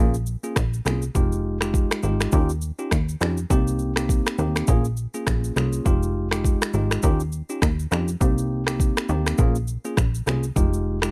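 Hypnotic and smooth, this afrobeats excerpt, cut from a longer piece, moves at 102 BPM in 4/4 with a 58% swing on the sixteenths, set in F minor and tuned to A4 = 438 Hz. A bell-like tine electric piano carries the accompaniment between Ab3 and Ab4, its tone bright, clean and direct, cycling through Bbm7, Fm9, Eb9 and Cm7. Beneath it, a plucky analog bass spans F1 to F2 with a punchy, funky character, its sawtooth, square and sine colours shaded by ring modulation and wave-folding, with a fast attack and decaying filter pluck. The electronic, produced afro-pop drum kit enters at 0.1 seconds, setting a deep kick against finger snaps, rim click and shaker. Piano, bass and drums all sit up front in a dry mix with little reverb, and lossy compression artefacts are audible throughout the 11.1 seconds.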